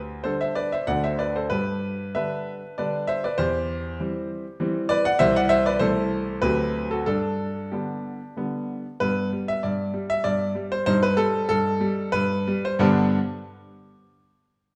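Classical-period piano sonatina in an elegant, dramatic mood, flowing in 3/4 with a rubato feel and broadening as it slows from 8.0 to 12.8 seconds. A solo concert grand carries the whole passage from 0.0 to 13.2 seconds, its tone clear and smooth with a deep bass, a vintage character and short sustain, placed up front against the wet bloom of a recital hall. It is cut from a longer piece.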